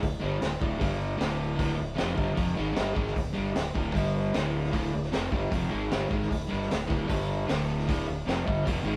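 Crunchy, double-tracked electric guitar leads this raw, swaggering garage rock fragment from the first beat, cycling a picked riff through D5, G5 and D minor chords with a touch of spring reverb. A growling fingered bass, bright and punchy with overdrive and tube saturation, plays beneath it from the start. A gritty breakbeat kit with a high-tuned snare, a punchy kick and a dark, rolled-off top enters alongside them and keeps a straight beat until 8.8 seconds, with the band heard live in one lightly reverberant room.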